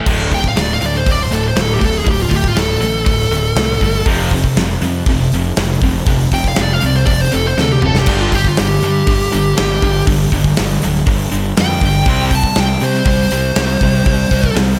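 A bright, double-tracked high-gain guitar riff opens this heavy, aggressive hard rock excerpt at 120 BPM in D minor, joined almost at once by a fuzzy, overdriven fingered bass and an airy, polished gated 80s drum kit with a punchy kick, while a dark, up-front lead guitar solo runs throughout over D5, F5, G5 and C5 chords, with a drum fill at 7.6 seconds and a big arena sound from recital hall reverb.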